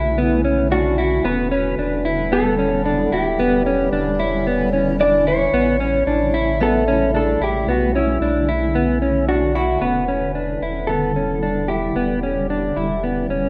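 A rough home-demo sound, dulled at the top and bathed in a moderate plate reverb, frames this haunting, ethereal fragment of dream pop at 112 BPM in 4/4 with a straight feel, set in E dorian. A dark, clean, fingered electric guitar sits up front carrying the melody through tape echo, while a second, compressed electric guitar plays arpeggios through analog chorus and tape echo. Beneath them, a granular cloud pad holds blurred, evolving chords with a slow attack and its own built-in reverb, and a deep, round sine sub bass sustains the low end. A metallic, ringing vibraphone struck with medium hard mallets, motor off, enters at 0.2 seconds as background texture in a boxy small room, its notes carried by tape echo, and stops at 10.1 seconds. The harmony moves from Bm11 through Em7 and A7 back to Bm11 before a new section opens on Em7 at 9.8 seconds.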